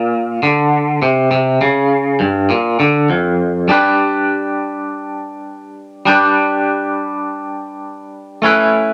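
A straight 4/4 pulse at 101 BPM carries this short, trippy and hazy rock fragment in G lydian, cut from a longer piece. A lone twangy electric guitar plays throughout, clean, picked and scooped, sitting up front with tremolo shimmering over its tone as it ranges from F2 to B4. It moves from a G5 chord to a full G major at 3.7 seconds, all set in a moderate studio ambience.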